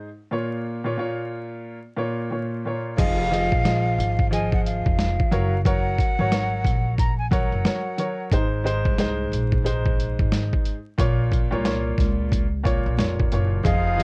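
A swung boom-bap groove at 90 BPM in 4/4 drives this tough, moody hip-hop excerpt, though for its first 3.0 seconds only a warm baby grand piano with short sustain plays, sitting up front over Bbm. At 3.0 seconds the gritty, sampler-style drum kit arrives with a thumpy kick, a medium-tuned snare, hi-hat and crash, overdriven, compressed and re-recorded in a small room, alongside a woody pizzicato upright bass holding down the low end. A breathy, hollow jazz flute carries the melody with vibrato and a soft attack from 3.0 to 8.3 seconds, returning briefly near the close as a bright trumpet section adds short ensemble stabs. The harmony moves through Fm7, Gb, Ab and back to Bbm. The whole recording is dry and heard through worn, warbling cassette tape with vinyl crackle and drifting pitch, giving it a dusty, lo-fi character.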